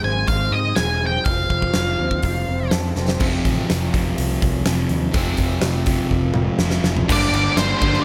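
Cathartic and angsty, this quiet-loud alternative rock fragment moves in a straight 4/4 pulse, cut from a longer piece. It opens with a dark, fuzzy octave-fuzz lead guitar carrying the melody up front, bathed in plate reverb, over a twangy, slightly broken-up electric guitar through a small old amp playing chorus-soaked arpeggios and a growly, punchy picked electric bass. A huge arena drum kit arrives at 0.3 seconds with a fat snare, punchy kick, bright cymbals and toms in a pumping hall sound, and a fill at 3.0 seconds ushers in the heavier half. From 3.2 seconds an overdriven semi-hollow guitar and a sludgy distorted guitar take over with riffs as the arpeggios stop, and a longer drum fill from 6.1 seconds leads into the final stretch. At 7.1 seconds the lead melody returns on a G minor chord, joined by a double-tracked high-gain guitar riff set in the background and a very quiet, reedy tonewheel organ holding chords through a slow rotary speaker with key click, all within a light room reverb.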